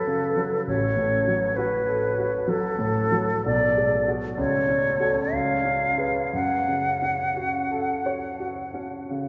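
This short excerpt of romantic classical music for flute and grand piano carries an elegiac, melancholic mood, moving in a slow 3/4 at about 56-67 BPM with a supple rubato feel in F# minor. The concert flute sings the melody up front from the opening, its pure, warm tone shaped by gentle vibrato and a soft attack for an expressive line. Beneath it, the concert grand piano supplies a clear, open accompaniment with deep bass and a short sustain, also placed close to the listener. The harmony moves from F#m through F#m/A and a G#m7b5/B, then settles on F#m/C#, leans into a C#7 and returns home to F#m at 6.3 seconds. A long cathedral reverb of 7.1 seconds surrounds both instruments with the resonance of a church or concert hall. The flute falls silent at 8.9 seconds, leaving the piano to finish at 9.3 seconds.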